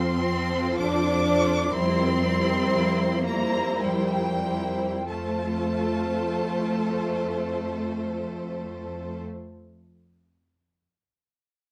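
Classical slow romantic movement for string orchestra in F major, tender and warm, moving in a rubato 3/4 at 45-68 BPM and slowing over its first 5.1 seconds, with a rich, vibrato-laden violin section carrying the high melody above a focused second violin line, a lush viola section adding expressive portamento from a distance, a smooth, even cello section and an up-front, clear double bass section grounding the bass, as the harmony moves from F to C7/F and returns to F at 5.1 seconds within a moderate large studio reverb, in this excerpt cut from a longer piece.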